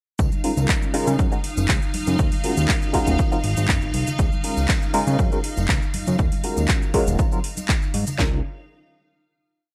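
Lightly reverberant, this joyful, feel-good filtered disco house piece at 120 BPM in Db major sets an up-front overdriven kit with a punchy four-on-the-floor kick and cracking snare beside a second overdriven kit of metallic hats, cabasa and claps, very quiet bright tambourine and congas, a fat, detuned analog bass playing a funky syncopated line, a reedy, slightly out-of-tune electric piano with fast tremolo and phaser on a rootless chord riff, and lush vintage string-machine chords with ensemble chorus, the strings, bass, piano and hats pumping to the sidechain until a held Dbadd9 chord at 8.2 s.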